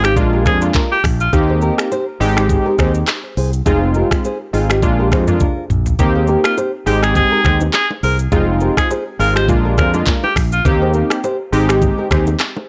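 Sunny and romantic, this afrobeats excerpt moves at 103 BPM in Eb major with a gentle sixteenth-note swing, cycling through mellow chords from Bb7 to Eb6, Abmaj7 and Fm7. An electronic afro-pop drum kit sits up front with a knocking kick, smooth hats, finger snaps, handclaps, rim clicks, shaker and toms, while a warm, direct fingered electric bass anchors the low end. Vintage analog keys carry the accompaniment with an airy, warbling, detuned sawtooth tone touched by chorus, a noise layer and a filter sweep, and a thumb-plucked classical nylon-string guitar plays a riff through analog delay. An edgy alto saxophone states a brief phrase at the start, then returns from 6.4 to 10.6 seconds with punchy, forceful, scooped notes and vibrato. A drum fill at 5.4 seconds leads into the entrance of very quiet, ringing congas and bongos at 6.0 seconds, all captured in a dry, gritty hardware sound with a cassette-tape character.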